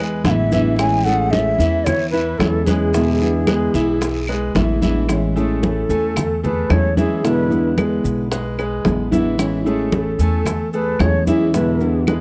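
A straight 4/4 Cuban son and guajira groove at 112 BPM in A major sways between E7 and Amaj7 in this danceable, dry, close 1970s-style small-room recording, where a woody, thumpy pizzicato upright bass sits up front under bright concert grand piano arpeggios and a thumb-plucked nylon-string guitar, while tight high-tuned bongos, ringing congas and woody claves patter in the background alongside close, grainy maracas and a raspy guiro that drops out at 5.1 seconds, and a breathy bamboo shakuhachi with vibrato carries the melody and takes a solo from 5.1 seconds.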